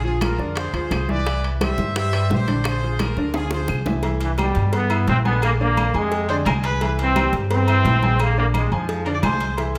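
A festive, danceable salsa excerpt opens with a punchy, brilliant horn section over a clear, worn baby grand piano, a woody, thumpy upright bass up front, and very quiet, damped congas, joined almost at once by tight bongos and cowbell, vintage claves, and ringing timbales and agogo bells in the background. After a drum fill, a bright trombone section takes the melody at 4.2 seconds with light vibrato. A distant, earthy erhu adds brief bowed phrases with portamento from 6.3 seconds, all set in a moderate large studio reverb.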